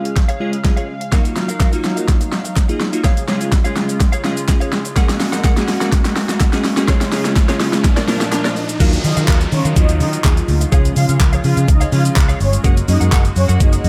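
An up-front pop drum kit drives this bittersweet dance-pop passage at 125 BPM in 4/4 and Eb minor, tuned to A4 = 436 Hz. Its electronic, layered sound combines a knocking kick, fat snare, hi-hat, shaker, crash and handclaps, overdriven and re-recorded in a small room, with a fill running through the build-up. Glassy, detuned digital keys carry the chorused, sidechain-pumped accompaniment with a filter sweep and fast, decaying attack, adding a short fill just before the drop at 8.8 seconds, while a shimmering retro pulse-width pad holds sustained, pumping chords in the background. A clean, compressed electric guitar, picked and recorded direct, plays a riff through ensemble chorus, and a very quiet, close and dry group handclap and faint riser and downlifter effects add texture. At the drop a dark, round, punchy muted fingered bass enters with sidechain pumping, and from 9.0 seconds an evolving filtered supersaw swell takes the melody with a moving notch and dub echo, as the chords circle through Db, Ebmadd9 and Gbadd9 within a digital ambience.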